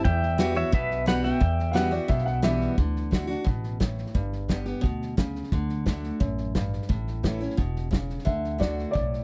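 A twangy, bright pedal steel guitar opens this short honky-tonk and classic country excerpt, carrying the melody over a picked, full-bodied acoustic guitar and a punchy, natural drum kit at an easygoing 175 BPM in D major. A woody pizzicato upright bass joins almost at once, and the steel's clean, compressed lead, with its volume swells and slide, rings out only until 2.4 seconds. A dark, mellow upright piano adds a brief second line from 1.7 seconds, then falls away as the progression settles onto D, G and A. The acoustic guitar, bass and drums carry the rest, with the medium-tuned snare and kick sitting up front, until the piano returns at 8.3 seconds. The dry, close sound of a 1970s-style studio gives the whole piece a nostalgic, easygoing feel.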